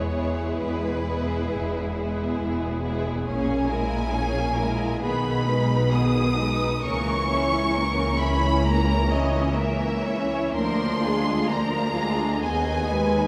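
Elegiac and solemn, this slow romantic movement for string orchestra unfolds in 4/4 with a rubato feel, cut from a longer piece. Two violin sections carry the music, one singing the melody up to D#6 and the other shaping a second line beneath it, both lush and focused with bowed vibrato and a smooth top. Underneath, a viola section supplies accompaniment with a warm, expressive and somewhat distant tone. The bass is shared by an intense cello section and a clear, close double bass section reaching down to E1, both bowed with vibrato. All five parts play together from 0.0 to 13.3 seconds, moving through a yearning progression that opens on E and settles on G#m/D# at 12.4 seconds. A wet concert hall reverb places the ensemble further back in the room, giving the sound a spacious, mournful glow.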